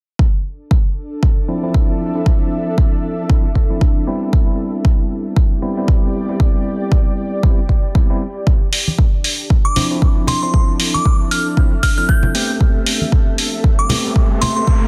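Swung sixteenths in 4/4 drive this deep, moody deep house excerpt, where a tape-warm, up-front electronic kick anchors an ethereal detuned pad that breathes with sidechain pumping and bell-like tine electric piano stabs that are filtered and trailed by dub echo over Dm9, Cmaj7 and Am9 chords; an up-front electronic hi-hat joins at 8.7 s and close acoustic congas at 8.9 s, a glassy, crystalline synth bell melody with chorus and echo enters at 9.6 s, and a background riser enters at 13.5 s, all within a dry, dense and heavily limited modern master.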